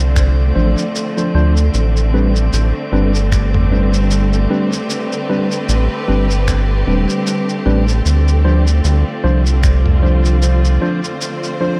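This deep, spacious ambient dub passage, cut from a longer piece, opens with a distant, lush symphonic string section holding clear, vibrato-rich bowed chords, a round analog bass sitting up front, and a glassy texture of drifting overtones shimmering with chorus in the background. The bass has a dark, evolving character, blending sawtooth and sine tones with a touch of ring modulation and a fast attack. At 0.2 seconds a muffled, thumpy electronic kick settles in beneath everything, alongside a lo-fi sampler-style kit of cabasa, finger snaps and toms that carries a tape-warm grit and a dub echo, all with a gentle swing on the sixteenths. From 0.6 seconds a worn, slightly out-of-tune tine electric piano adds mellow, clean stabs that also trail off into dub echo. The harmony moves from Dm7 to a long stretch of Am11 before returning to Dm7, all set in a light digital ambience.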